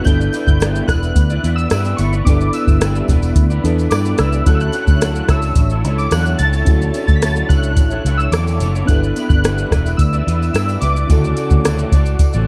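Warbling, detuned lo-fi synth keys carry a nostalgic melody from the outset, joined by a twangy, slightly broken-up electric guitar with chorus and vibrato, a reedy, worn electric piano with a cassette-tape tint, and a jingly tambourine sitting very quietly in the background. Almost immediately a soft analog rhythm box with a deep kick, metallic hats, rim click and shaker settles into a straight groove alongside a round, foam-muted electric bass that sits up front. This laid-back, sunny slice of bedroom pop, cut from a longer piece, drifts between G6 and Dmaj9 colours in a dark, dry production that keeps every part close.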